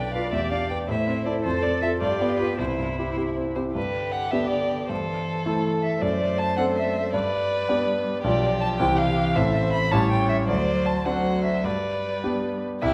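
In a quick 6/8, this lively, spirited classical-period movement for piano quartet is cut from a longer piece. A smooth, even violin with vibrato carries the melody over a second violin with a soft attack and expressive portamento and a focused, rich cello. An intimate, up-front concert grand with deep bass and audible action noise supplies the accompaniment, while a recital hall's reverb surrounds the ensemble as the music moves into a new section at 3.8 s.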